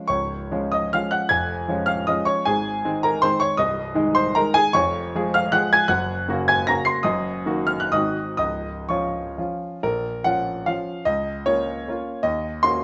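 Romantic classical solo piano in a graceful, rustic triple-time dance with dotted rhythms and free rubato between 115 and 169 BPM, the clear, natural, up-front baby grand with short sustain sitting in a moderate studio reverb as it moves from Db major into Bb minor at 9.8 s before this short excerpt breaks off at 12.8 s.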